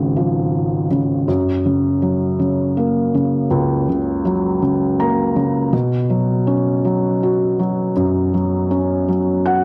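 Pop in an aching, melancholic mood at 54 BPM in a straight 6/8, carried by a lone felt-muted upright piano that sounds soft, intimate and up front with a thick felt mellowness and slapback echo, moving from Db to Gb and later Bsus2, with fills at 4.6 and 9.1 seconds, all set in a light reverb within a dry, close 1970s-style studio sound in this short fragment of a longer piece.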